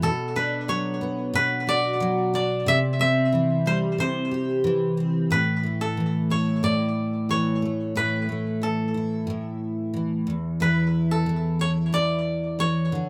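Pop at 91 BPM in a carefree, heartfelt mood, this rough home-demo fragment pairs a bright, woody koto melody, played with fingerpicks and touched by digital delay, with a full-bodied, double-tracked picked steel-string acoustic guitar accompaniment, both up front in a light reverb, moving from Bm to C and then Asus2 before the harmony drops away at 10.3 seconds.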